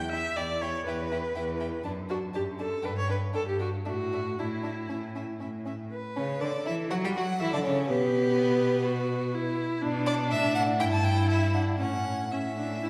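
A pulse of 121 BPM in 4/4 moves with a flexible, rubato feel through this spirited, graceful classical-period movement for string quartet in D major, cut from a longer piece. The first violin carries the melody with a rich, focused, vibrato-laden bowed tone, while the second violin adds a warm, expressive second line with soft attacks, gentle portamento and a close presence. Alongside them, the viola supplies smooth, even accompaniment that sits up front, and the cello anchors the bass with a vibrato tone that is both up front and distant. The harmony opens on E minor and passes through D/F# and G5 toward a suspended A, then the second part of the passage begins at 5.9 s on D and travels through G/B, B minor and Em/G before closing on A at 11.8 s. A wet scoring-stage reverb with a 1.9-second decay places the ensemble further back in the room.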